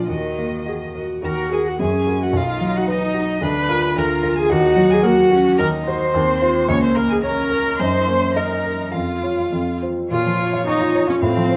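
A distant, vibrato-laden violin carries the melody high above this restless, stormy excerpt from a quick classical-period movement for piano quartet, moving at 100-112 BPM in 2/4 with a rubato feel and turning from Eb minor to Bb minor at 5.6 s. Beneath it, a smooth-topped viola and an intimate, up-front baby grand piano with audible action noise and short sustain supply the accompaniment, while a focused cello adds a second line from 0.1 s. A stone room's reverb and a dark production frame the ensemble.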